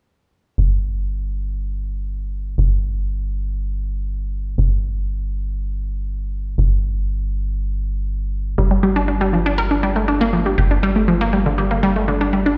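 A lush hall reverb fills a bare room here, as if the music is played over a big sound system, framing this cinematic, hypnotic techno excerpt in G minor at 120 BPM. A tight, punchy sequencer bass with a ring-modulated, mellow edge drives on G1 from 0.6 seconds, up front in the mix. At 8.6 seconds a bright, detuned unison pluck joins with warbling vintage arpeggios from D3 to Bb4, trailed by tape echo.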